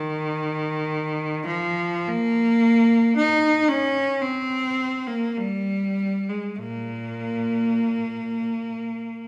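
A lone bowed cello sounds from the very first moment, playing clear and up front for the full 9.3 seconds of this short classical excerpt. The mood is yearning and lonely, and the expressive, free phrasing in a three-beat metre moves at a slow, rubato pace. The single player uses vibrato, giving the tone an intense quality with a smooth top to the sound. The line ranges from Bb2 to Eb4. A wet recital hall reverb surrounds the instrument, lending the spacious feel of a church or concert hall to this fragment cut from a longer piece.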